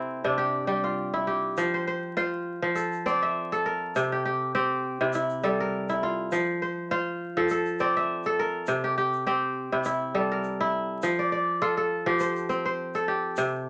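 This excerpt of West African string and xylophone music opens with a solo kora spinning fingerpicked arpeggios, its ringing, crisp tone placed up front in a moderate studio room. At 1.6 seconds an egg shaker joins far in the background, its grainy, band-limited rattle adding a vintage edge beneath the strings. The tempo sits at 102 BPM in 4/4 with a light swing on the sixteenths, giving the flowing, hypnotic mood a gentle lilt. In F major, the harmony rocks steadily between C and F chords, and the kora ranges from C3 up to E5. A vinyl crackle hangs over the recording, and a new section begins at 11.0 seconds before the piece cuts off at 13.7 seconds.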